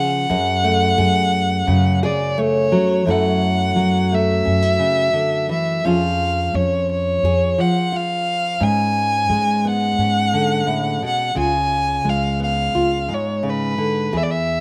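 Dry and open-air, with the violin and guitar placed up front, this heartbroken, reflective acoustic folk-pop ballad excerpt sets a rich, biting bowed violin melody with vibrato and slapback echo over bright fingerpicked nylon-string guitar, while a woody pizzicato upright bass joins at 0.3 s as the harmony moves from F#madd9 through F#m7 and G#dim to C#7.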